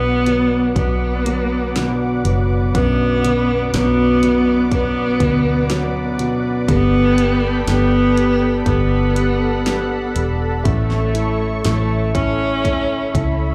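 A melancholic, longing pop ballad fragment opens with a smooth, bowed cello singing the melody up front with vibrato and slapback echo, over a deep-toned grand piano with long sustain, a fingerpicked jumbo acoustic guitar playing arpeggios through slapback echo and digital delay, a thick, warbling detuned sawtooth pad swathed in chorus, and a dark, round, foam-muted electric bass, while punchy, layered electronic drums with a fat snare join at 0.3 s, the whole performance heard as a live gig through a club PA as the harmony moves from Bm to Gadd9 to A.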